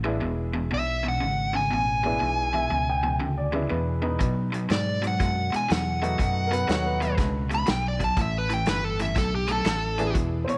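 Up front sits a dark, smooth lead guitar with overdrive and slapback echo, carrying the melody from 0.7 s in this gritty, swaggering electric blues shuffle at 121 BPM in E mixolydian, swung in 4/4. Beneath it, a cranked stack guitar drives an overdriven, picked riff in the low register, while a fingered electric bass adds a round, direct bottom. A brilliant upright piano with short sustain and audible action noise plays accompaniment throughout, and a second, woody upright piano adds an intimate line from 2.5 s to 7.4 s and returns briefly at the very end. An acoustic drum kit with a punchy kick, medium-tuned snare and hi-hat arrives at 4.2 s as the harmony moves from E7 to B7, later landing on A5. Light reverb and small room ambience give this short cut from a longer piece a natural, small-room feel.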